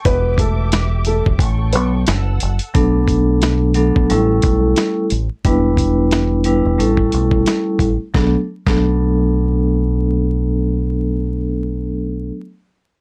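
Boom-bap hip-hop with a reflective, dark mood, cut from a longer piece and carried by a swung groove. It opens with a brief break in which a rich, bowed string section holds lush sustained chords for the first 2.7 seconds, while a dark, woody upright piano, slightly detuned and vintage in tone, plays a short melody through an analog delay. A deep dub fingered electric bass, round and punchy with transformer saturation, sits up front from 0.1 seconds through the end, alongside a dusty sampler-style drum kit whose thumpy kick, medium-tuned snare and hi-hat carry 12-bit grit and run until 8.8 seconds. At 2.7 seconds a vibraphone with medium hard mallets takes over the accompaniment, its metallic, ringing tone colored by slow motor vibrato, a boxy small room and cassette tape. The recording is dry and gritty, with vinyl crackle over a seventh-chord progression that moves through Em7, A7, F#m7 and Bm7.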